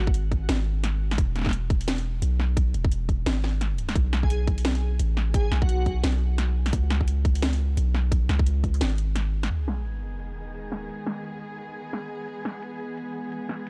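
An airy, detuned lead with chorus and tape echo sounds over a deep, mellow 808-style bass to open this cinematic, spacious half-time drum and bass in G# phrygian at 173 BPM, as an overdriven tight electronic kick and a drum kit of cracking snare and filtered bright hats drive the swung drop until a sub drop at 9.5 seconds brings in a dark, woody cello section pumping with sidechain on sustained chords, all in a dry, gritty, saturated mix.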